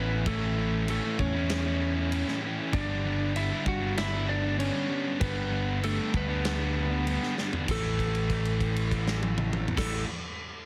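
Lead guitar, crunchy overdriven guitar, thick fuzz guitar and picked electric bass open together at 97 BPM, a bittersweet, anthemic slice of quiet-loud alternative rock in A mixolydian, with the compressed, slightly broken-up lead carrying the melody through plate reverb over bright fuzz riffing, a background crunch guitar and an amped bass sitting up front. A big-room acoustic kit enters at 0.3 seconds with a punchy, softly clipped kick, a medium-tuned snare, toms and crash, its top rolled off, and a drum fill at 7.4 seconds launches a new section at 7.7 seconds built on a held note. The chords move from A to G and land on A5, all within a dense, heavily limited modern master.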